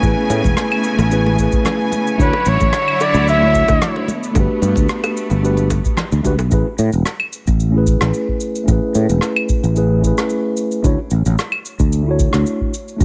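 Sunset chillout with a smooth, blissful, lightly swung feel, where a mellow, clean tine electric piano with delay and a growly, punchy fretless bass sit up front over a deep analog electronic kick and brushed cabasa, rim click and claves, while a clear, earthy bowed string section under a low-pass filter and close, dry bongos and congas in the background drop out at 6.5 seconds, and a smooth-topped flugelhorn with light vibrato and delay sings a brief solo line from 2.2 to 4.1 seconds over lush major-ninth chords in this excerpt from a longer piece.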